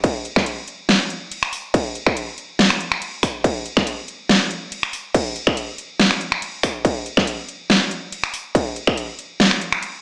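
Dubstep in a half-time feel, chaotic and aggressive, cut from a longer piece and carried entirely by drums. A distorted electronic kick sits up front under a layered kit of huge snare, metallic hi-hats, finger snaps and crash cymbal, both treated with studio reverb, pausing for a brief break at 4.7 seconds before the kick drops out at 9.0 seconds. The digital ambience and light reverb give the whole a small-speaker sound.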